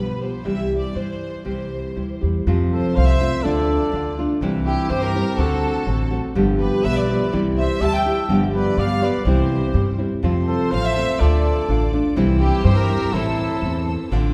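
Fingerpicked nylon-string guitar with audible finger squeak sits up front beside a thumpy, woody pizzicato upright bass in this proud, festive mariachi passage cut from a longer piece, while a clear, smoothly bowed violin section carries the melody with vibrato, a mellow trumpet adds a second line from 2.7 seconds, and a biting, bright violin section holds sustained chords in the background from 10.2 seconds, set in a wet concert-hall reverb.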